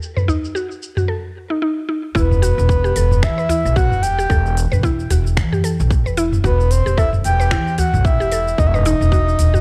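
A dry cut from a longer organic downtempo piece, mystical in mood and swung in feel. A filtered electronic kit of finger snaps, crisp hi-hat, shaker and toms opens at once. Within the first second it is joined by a round, detuned mallet-like synth pluck playing chorused, tape-echoed arpeggios and by a deep udu set back in the background. At 2.2 seconds the harmony settles on Emadd9, and a breathy, flute-like synth lead with vibrato carries the melody up front over a woody, thumpy pizzicato upright bass that pumps against a tight electronic kick.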